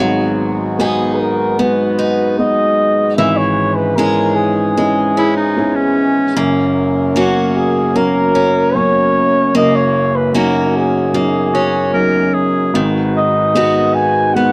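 A straight 4/4 pulse at 75 BPM carries this tender, nostalgic acoustic folk-pop ballad in F# mixolydian, with a woody upright piano, its action noise audible, and a picked archtop guitar playing arpeggios with finger squeak, both up front, while a reedy hand-pumped harmonium breathes sustained chords in the background. A breathy, mellow flugelhorn enters at 0.8 seconds with the jazz-style melody, marked by light vibrato and a soft attack, and a bright, classical-style clarinet adds a second line from 5.2 to 12.9 seconds over chords moving from G#m7 through C#m/G#, F# and D#m7/F# back to G#m7. The sound is that of a dry, close 1970s-style studio recording with light reverb, and this passage is cut from a longer piece.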